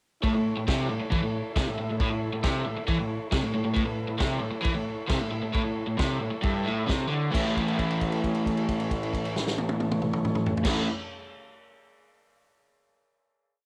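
Garage rock with a rowdy, swaggering feel: a bright, overdriven, double-tracked electric guitar sits up front with a picked single-note riff, over a vintage kit's tight kick and medium-tuned snare in a garage stomp groove, its rolled-off top carrying cassette-tape character, while a reedy combo organ holds clean triad chords in quarters with heavy vibrato, all in a small room with light reverb, until the riff gives way to a final chord at 7.3 seconds.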